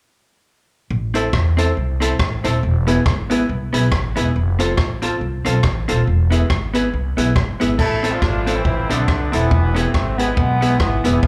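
Heard as a live gig through the venue's PA with club reverb, this driving, energetic ska swings its eighths as a growly, woody pizzicato upright bass and a distant, roomy big-band drum kit with a boomy kick and rolled-off top push through Am, E, F and E. A dark, clean hollow-body jazz guitar adds picked accompaniment with analog delay and slapback echo, while a smooth vintage upright piano punches in stabs with its own slapback. At 7.8 s a tight horn section takes the melody up front, with light vibrato and octave doubling, colored by delay and slapback echo.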